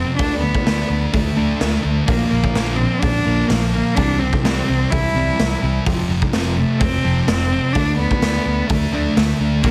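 A clear, focused bowed cello with vibrato carries the brooding, angsty melody up front in this quiet-loud alternative rock excerpt at 127 BPM, set against a thick, dark fuzz guitar riff, a clean picked electric guitar arpeggio with spring reverb sitting in the background, a round amped fingered bass and a gritty, saturated garage drum kit with a boomy kick that enter at 0.2 seconds, all moving through D5, Bb, C and F5 chords under a heavily compressed, radio-like sound.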